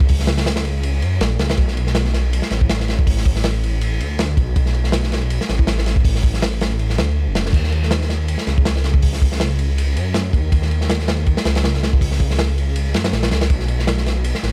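A crunchy, gritty breakbeat kit with dark cymbals, a tight kick and a rolled-off top drives this frenetic, atmospheric drum and bass and jungle passage, cut from a longer track, while a thick, menacing detuned saw bass sustains with a beating, saturated tone; both sit up front in a dry mix under vinyl crackle as the drop starts again at 7.5 s.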